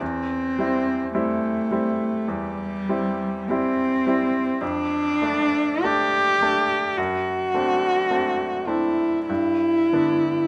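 In a lightly reverberant sound, this tender romantic classical passage in C major drifts at about 47-55 BPM with a free, rubato feel in 4/4, as a dark, expressive, close bowed cello sings the melody up front with vibrato and portamento while a bright, brilliant baby grand piano with short sustain accompanies beneath it, moving from C/E through Dm/F and D7/F# to rest on G at 9.3 seconds.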